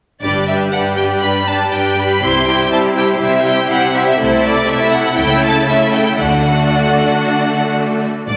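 Graceful and lively, this short excerpt of a quick classical-period movement for string orchestra moves at 120 BPM in 4/4 with a rubato feel, settling in G major over a chord path from G through C and Am/C to A/C# and D. A smooth, up-front violin section carries the melody with vibrato while a second, more distant violin line and a lush viola accompaniment fill the middle, and a focused cello section and a double bass section set in the background hold the bass. A concert hall reverb gives the strings a wet bloom, and all parts enter at 0.2 seconds, with the second violins and violas closing at about 8.1 seconds while the melody, cellos and double basses carry on to about 8.4 seconds.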